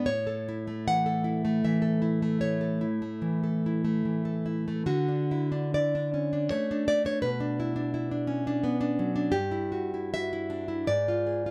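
A nylon-string classical guitar plays alone and up front, its full-bodied, fingerpicked tone caught by close, detailed microphones that pick up finger squeak, with light reverb around it. This short excerpt from a longer romantic piece is sunny and warm in mood, moving in a rubato 3/4 between 65 and 88 BPM in D major. It opens on A, settles onto D at 4.9 seconds for a second section through Bm and Em/G, and ends on Ddim/Ab at 10.9 seconds.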